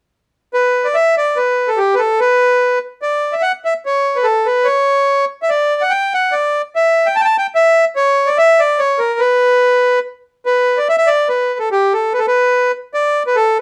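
Bittersweet and nostalgic, this short excerpt from a longer musette piece in B minor sets a lone accordion at 145 BPM in a straight 3/4 pulse, its reedy single-reed voice with dry tuning sounding clear and up front from G4 to A5 under light reverb, playing a passage that begins at 0.6 seconds and returns at 10.5 seconds before the cut at 13.6 seconds.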